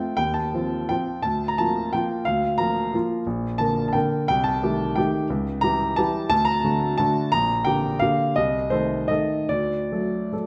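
Set in the moderate reverb of a recital hall, a smooth, vintage-toned grand piano sits up front in this elegant, wistful classical waltz excerpt in 3/4, played alone with rubato at 144-190 BPM across a range of Bb1 to Bb5, opening in Bb major before turning to G minor at 3.3 s, where diminished chords and a closing D chord at 9.5 s deepen its longing before the cut at 10.5 s.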